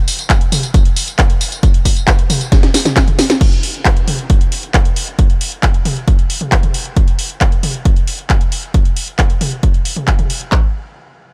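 Euphoric and uplifting, this trance excerpt is built entirely from two electronic, layered techno drum kits that sit up front with little reverb and the close sound of a small room. One kit carries crash cymbal, handclaps, hi-hat, snare, tambourine and toms, while a louder second kit drives kick drum and handclaps. The passage opens on a drop, a drum fill runs from 2.5 to 3.4 seconds, and a new section then carries the beat on to the end.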